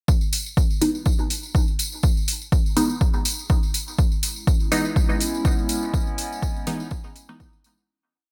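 A punchy, overdriven four-on-the-floor kick and a jingly, close and dry tambourine in hand-played sixteenths open this deep, hazy dub techno piece at 0.1 s, joined by metallic, overdriven programmed hi-hats with a light swing. Sparse, muted chord stabs with a detuned filter-pluck bite sit up front, moving one chord shape in parallel through phaser, sidechain pumping and dub echo. A warbling, nostalgic lo-fi pad enters at 4.4 s with chorus, phaser, its own reverb and the same pumping, before the whole piece fades out from 5.3 s in a light digital ambience.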